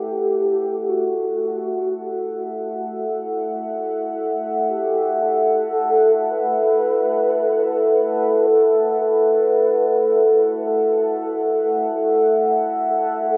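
Dark ambient drone in free time and F# phrygian: a desolate, cavernous fragment cut from a longer piece, resting on a single F#m chord for its 13.4 seconds. Up front, a deep, moody analog pad of sawtooth and triangle tones with a sub octave holds sustained chords with a slow attack, colored by chorus and phaser. In the background, a mellow, horn-like synth lead carries the melody with a round, warbling, vintage tone of detuned sawtooth, soft attack, vibrato, chorus and a diffuse ambient delay, all steeped in a wet cathedral reverb with a 5.2-second decay and the highest frequencies cut away.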